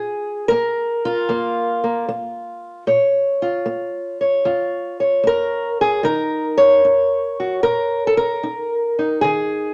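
A fingerpicked old ladder-braced acoustic guitar carries this short cut from a longer piece on its own, sitting up front with a dark, woody, boxy tone and the character of old strings. The style is acoustic country blues in a smoky, soulful mood, set in 4/4 with a swung eighth-note feel. The guitar ranges from a low F2 up to Db5, moving from a Bb minor chord to an Eb5 chord at 6.0 seconds. A moderate studio reverb gives the instrument some room around it. The guitar plays throughout, ending at 9.7 seconds.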